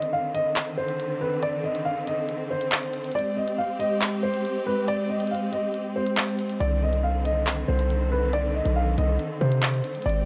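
Drill hip hop at 139 BPM in a half-time 4/4 feel, this dark, cold passage in C harmonic minor sits slightly under standard pitch at A4 = 439 Hz. A mellow, deep-toned concert grand piano carries the melody between B4 and F5, its notes trailed by a delay, while a lush symphonic string section holds bowed chords beneath it with soft attacks and expressive vibrato. The electronic drill kit keeps crisp hi-hats and handclaps up front throughout. The opening stretch plays as a break until 6.6 seconds, when a punchy, heavy 808-style bass enters with a fast attack, a sine body, a noise layer and a decaying tail. The harmony moves from Cmadd9 to Abmaj7 at 3.2 seconds and returns to Cmadd9 as the bass arrives, all in a small room ambience, and the passage is cut from a longer piece.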